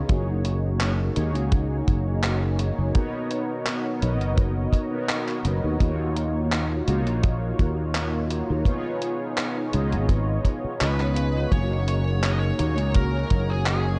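Dark, lightly reverberant small-room production frames this hazy, nostalgic vaporwave excerpt, where round, detuned synth brass with lush chorus and analog delay carries the chords over a growly, punchy fretless bass, a tight, dry kick and gated 80s drum-machine handclaps and hi-hat, both kick and drum machine carrying gritty 12-bit sampler texture, until a bright, distorted high-gain lead guitar with tape echo enters at 10.8 seconds.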